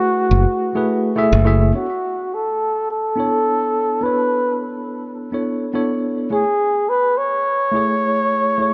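Smooth and wistful, this sunset chillout fragment with a light swing sets a breathy, whispered flugelhorn melody with delay over a worn, slightly out-of-tune tine electric piano moving from F#m11 through Bm11 to Amaj7, while a bright, punchy fingered electric bass appears only from 0.3 to 1.7 seconds, all bathed in a moderate plate reverb.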